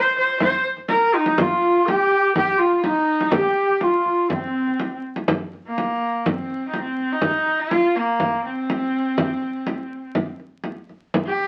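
Mongolian folk in a windswept, solemn mood, this excerpt moves at 123 BPM in 4/4 in C yu mode, cut from a longer piece. A nasal, husky horsehead fiddle carries the melody up front with light vibrato and portamento, joined by a breathy, end-blown bamboo xiao on a second line that drops out at 5.0 seconds, while a close, dry frame drum struck with hard hands keeps the beat from 0.2 seconds. The sound has the crackle of a very old 78 rpm record and a wet studio reverb.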